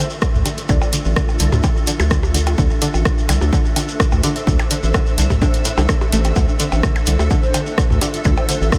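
A straight 4/4 pulse at 127 BPM drives this clinical, cool minimal techno excerpt in D minor, resting on a Dm7 chord. A punchy, up-front electronic kick and a round, deep analog bass with sidechain pumping anchor a house kit of hi-hat and rim click, overdriven electronic toms and percussion blips in the background, and a saturated shekere. A twangy, string-like resonator pluck riff with chorus and tape echo, a cloudy granular pad and a flickering, grainy texture fill the space, while a hollow, distant baroque flute with analog delay sounds briefly at the start and returns at 7.4 seconds.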